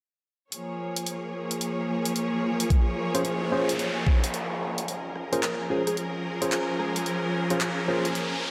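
An overdriven, knocking electronic kick drum sits up front in this swaggering, playful glitch hop excerpt, punching in briefly from 2.7 to 4.2 seconds. From 0.5 seconds, a clear, focused symphonic string section holds lush, bowed sustained chords over a Bb minor seventh with vibrato and sidechain pumping, while a layered, overdriven drum kit adds bright hats, handclaps and rim clicks with a swung feel. A worn, slightly out-of-tune tine electric piano plays stabs through a combo amp, roughened by 12-bit sampler grit, light overdrive, pumping and tape echo. An electronic noise sweep and riser carry the music through a short break into a build-up, where a plucky, detuned unison lead with a sub octave and filter sweep slips in at 5.3 seconds, mellow and set back in the mix with tape echo. The whole mix is soaked in a lush hall reverb, giving it a dreamy glow.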